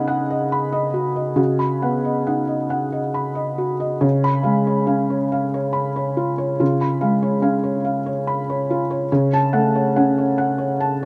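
Neoclassical minimalist piano in a melancholic, reflective mood, this short excerpt moves in a slow, rubato 6/8 at roughly 44-48 BPM in dotted quarters, tuned to A4 = 438 Hz. A solo felt-muted upright piano plays from C#3 to B5 with a soft, mellow and intimate tone, sitting up front with its action noise clearly audible. Recorded outdoors with light reverb, it drifts from B/C# to C#7 at 4.0 seconds and settles on F#m/C# at 9.1 seconds.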